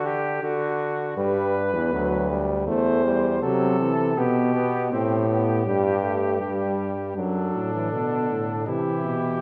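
Classical imitative brass canzona in G major at a stately, elegant 80 BPM: a mellow, distant flugelhorn with vibrato and a punchy, up-front trombone with light vibrato open together, a clear bass trombone with vibrato joins at 1.2 seconds, and a dark, smooth-topped trumpet with light vibrato enters with the melody at 7.2 seconds, the ensemble ringing in a reverberant recital hall.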